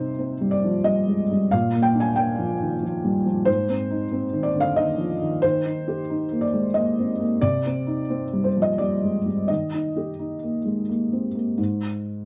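Neoclassical minimalist piano in 3/4, this brief excerpt moves at roughly 85-93 BPM with a rubato feel, settling into Eb major and a peaceful, hopeful mood. A felt-muted upright piano plays solo throughout, from 0.0 to 12.3 seconds, ranging from Ab2 up to Ab5. Its tone is soft, mellow and intimate, with a boxy, up-front character and audible action noise that brings the listener close to the instrument. The harmony drifts through Cm, Bb, Ab and Eb before returning to Cm and resolving to Eb, with the chords falling away at 11.6 seconds. Light reverb and a dark production give the short passage a gentle, enclosed atmosphere, cut from a longer piece.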